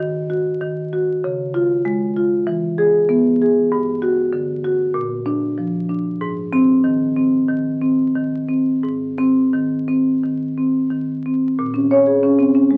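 Vinyl crackle and light reverb give this a very old 78 rpm record sound, with a woody, round solo marimba played with soft mallets sitting up front. It is a hypnotic, reflective contemporary classical piece cut from a longer work, moving in a rubato 4/4 at around 85-98 BPM across a range from G2 to Db5. The harmony drifts through Db, E, G5, Bb and Ab before turning to a Bbm9 at 11.6 seconds as a new section begins.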